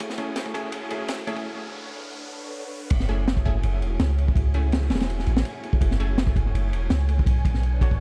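An echo-heavy mix soaked in studio reverb gives this drum and bass cut, steeped in jungle, a frenetic yet nostalgic air. A silky, vintage string machine holds dark, chorused chords throughout, while a crunchy breakbeat kit sits up front with a small-room sound, a punchy kick, a high-tuned snare and dark cymbals, all gritty and saturated. An electronic riser carries the build-up and brief break until the drop at 2.9 seconds, and bold, detuned orchestra-hit-like synth stabs, layered with noise and sent into dub echo and their own reverb, recur from near the start. At the drop a deep, sine-based 808-style bass arrives, tube-saturated and up front, and from 3.9 seconds a breathy, wind-like tuned noise texture drifts in the background. The harmony moves between F#m9 and Bm9 chords.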